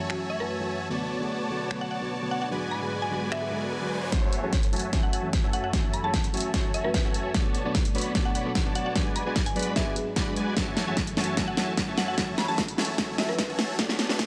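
A thick, detuned supersaw riff sits up front in this lush, bittersweet half-time future bass, pumping against the sidechain as a filter sweeps across it through the build-up. A woody, mallet-like FM pluck carries the melody over a soft, rounded pluck accompaniment with chorus and tape echo, while an airy, breathy pad holds sustained chords in the background. A big-room dance kit with a huge snare, hi-hat and finger snaps drives the fill, a punchy electronic kick joins at 4.1 seconds, and a very quiet riser appears at 2.7 and 12.7 seconds, all inside a lush hall reverb.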